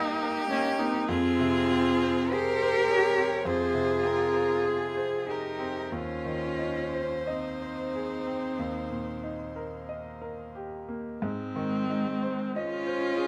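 A tender, slow romantic movement for piano quartet opens with all four players together in Ab major, its 4/4 pulse of 42-54 BPM stretched by rubato. The single violin sings a focused, vibrato melody until 10.5 seconds, while a rich, up-front viola fills in the accompaniment, a bright, brilliant concert grand with deep bass supports the harmony, and the cello carries an expressive second line with soft attacks and portamento. Close, detailed microphones and light reverb capture this intimate excerpt, which moves from Eb/G through Fm and Ab/Eb to Eb before settling on Ab at 11.2 seconds.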